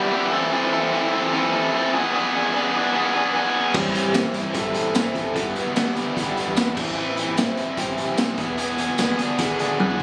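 Bittersweet and restless, this excerpt of indie rock in A minor drives along at 149 BPM, opening with a bright, overdriven raw garage guitar picking out a riff up front over chords moving from Am through Bm6. At 3.7 seconds a second overdriven electric guitar, warm with ensemble chorus and slapback echo, joins in the background alongside a dark, round, growling picked bass and a gritty, saturated garage drum kit with a boomy kick, tambourine and a pumping small-room sound. The whole take has the light reverb and compression of a phone recording in the room, and a drum fill arrives at 9.8 seconds as the chords settle on E7.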